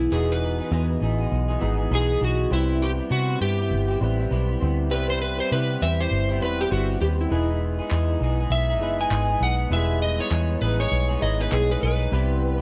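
Laid-back and nostalgic, this indie bedroom-pop piece in E major sways along at 100 BPM in 4/4 with a light 16th-note swing. An electric slide guitar carries the melody as a solo throughout, its fingered, slightly broken-up tone sitting up front and dressed in lush chorus and slapback echo. Underneath, a barky tine electric piano adds bright, clean accompaniment through a combo amp with a cassette-tape colour. An electric guitar through a small old amp provides lo-fi, compressed support, treated with analog chorus and vibrato, while a vintage muted picked bass anchors the low end with a dark, round, foam-muted sound. A crisp, close group handclap joins from 7.9 to 11.7 seconds as the harmony drifts between Emaj7 and Cmaj7, all captured in a dry, intimate 1970s-style studio sound.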